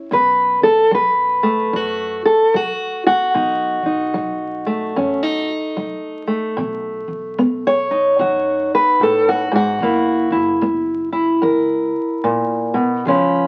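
A swung 4/4 groove drives this rollicking, swaggering slice of acoustic country blues, cut from a longer piece, where a dark, fingerpicked steel-string guitar sits up front and carries the melody as a solo throughout, moving from B7 to F#7 at 9.8 seconds. Beneath it, a woody, growly pizzicato upright bass thumps along in the background, while a very quiet kick drum played with brushes adds a punchy, airy pulse. Moderate studio reverb and the crackle of a very old 78 rpm record give the whole recording a vintage, lived-in character.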